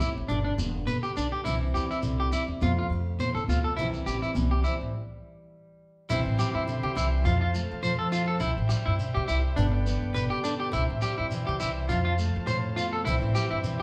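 A twangy, slightly broken-up electric guitar plays arpeggios up front in this joyful, danceable highlife excerpt at 103 BPM in C major, joined by bright picked acoustic guitar, woody pizzicato upright bass, a grainy shekere and ringing high-tuned congas that drop out at 4.7 s, with a reedy combo organ adding light-vibrato chords from 6.1 s after a brief stop, all captured as a band playing live in one room with generous studio reverb.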